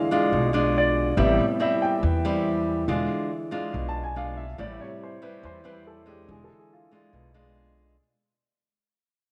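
A straight 4/4 bossa nova pulse at 141 BPM carries this intimate, melancholic fragment, cut from a longer piece and fading out across its full 8 seconds. The fingerpicked nylon-string guitar sits small and up front, its fresh strings warm with audible finger squeak as it comps through the alternating E7b9 and Am7 changes. A warm grand piano takes the solo throughout, its natural, intimate tone carrying the audible mechanical noise of its action. Entering at 0.3 seconds, the pizzicato upright bass supplies a woody, low foundation on steel strings. A wet echo-chamber reverb with a 1.7-second tail and a studio ambience wrap the trio in a lingering space.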